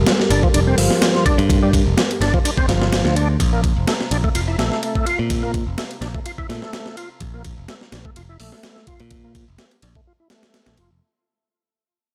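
A swung 126 BPM breakbeat groove drives this gritty, raw excerpt, with a compressed sampler-style kit up front, its thumpy kick and high-tuned snare joined by hi-hat and ride in studio reverb, a bright, growly picked electric bass beside it, an overdriven tonewheel organ riff thickened by chorus vibrato, slow rotary speaker, low-pass filter and tape echo, and a dark, nasal, detuned analog pad pumping in the background with 12-bit sampler grit as the chords move from Gmadd9 to Bbsus2 at 3.4 seconds, the whole excerpt fading out over its 11 seconds.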